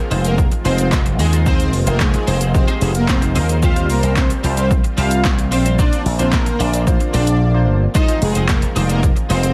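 A bright slap bass, direct and amped through an envelope filter, sits up front and drives this confident, bittersweet dance-pop excerpt at 111 BPM in a straight 4/4, pumping in step with the sidechain. Beside it, a tape-warm analog drum machine hits with a punchy kick and snare, handclaps, hi-hat and shaker, with a short room on the snare, clap and hats. In F dorian with tuning at A4 = 444 Hz, the harmony moves from Fm7 to Csus4 and Bbadd9 before returning to Fm7. That harmony is carried by a glossy, retro polysynth of pulse, square and sawtooth waves with a sub octave, filter sweep, chorus, phaser and sidechain pumping, sitting mellow in the background over a lush, thick, nasal unison pad held very quietly beneath. A clean, twangy twelve-string electric guitar plays a compressed, picked riff with ensemble chorus, while a soft supersaw sings the melody, smooth and airy with a noise layer, moving notch, delay and sidechain pumping. 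A distant, crisp group handclap in a large room joins at 0.9 s, and the drop breaks for a silent gap from 7.4 s before resuming at 7.9 s, wrapped in digital ambience.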